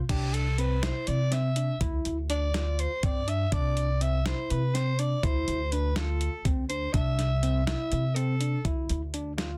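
A raspy soprano saxophone solos at a distance over a woody, pizzicato upright bass and a thumpy, sampler-style drum kit, while an overdriven, barky tine electric piano with phaser plays arpeggios, all in a driving, bright progressive instrumental in 7/8 at 245 BPM in C major, cut from a longer piece with light reverb and a dense, heavily limited modern master.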